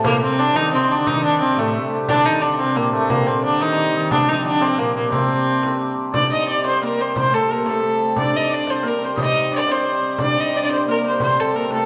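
Driving and mysterious, this medieval dance moves in a straight 6/8 at 118 BPM in C dorian, tuned slightly high, and is cut from a longer piece. A biting, nasal fiddle carries the melody up front, its earthy tone topped smoothly, while a shimmering hammered dulcimer rings out a second line in the same range. Beneath them, a rich, fretted viola da gamba adds another second line with light vibrato, soft attacks and an airy bow, sounding close and intimate. A reedy, breathing harmonium holds a drone in the background, and a small, bright frame drum keeps the dance moving. The whole band plays live in a stone room whose wet reverb lingers, and the first section gives way to a second at 6.1 seconds.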